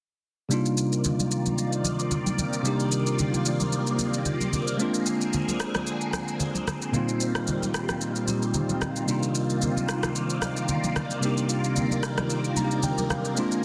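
Deep and soulful, this amapiano excerpt moves at 112 BPM in 4/4 with a lightly swung sixteenth-note feel in C minor, tuned slightly sharp to A4 = 442 Hz. A clean tine electric piano sits up front as accompaniment, its tone coming through built-in speakers, and it plays a fill from 12.3 to 13.4 seconds. Beside it, a swirling vintage string machine holds sustained sawtooth chords with a slow attack and long release, its bright tone shaped by ensemble chorus and phaser. The electronic shaker and rim click give a produced pulse, with soft clipping on the snare, while acoustic congas with a thin-skinned, medium-tuned sound from a small room sit in the background from 1.1 seconds. The harmony moves from Cm11 through Bb9 and Eb69/Bb back to Cm11, all within a lush hall reverb and a dense, heavily limited modern master.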